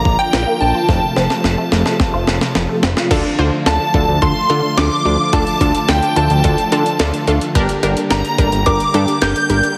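Heavily compressed with a radio-style polish and a moderate plate reverb, this nostalgic, upbeat synth-pop excerpt moves at 108 BPM in a straight 4/4, passing from Bb and F to Dm and Gm. Up front, a shimmering, dreamy FM bell carries the melody over a fat, saturated sawtooth bass and a gritty, pitched-up jungle sampler-style kit with a thumpy kick and tape-warm grain, which plays a fill from 0.9 to 3.1 s. Vintage, warbling string-machine violas hold chords in the background, a squelchy, resonant blip pluck plays arpeggios until 3.1 s, and a lush, punchy unison pluck then enters as accompaniment.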